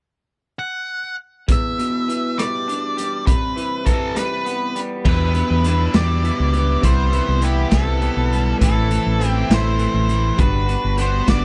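Restless and cool, this indie rock excerpt moves at 67 BPM in a straight 6/8, opening with a dark, fuzzy octave-fuzz lead guitar melody alone before a twangy, slightly broken-up electric guitar riff through a small old amp with subtle chorus and a gritty, saturated garage drum kit with punchy kick and crash, hi-hat, rim click and snare enter at 1.5 seconds over Em7 and Cmaj7, then at 5.0 seconds a biting overdriven guitar riff with lush chorus sits in the background while a round, up-front fingered electric bass joins as the chords move through Am to Gmaj7, all in a dry small room.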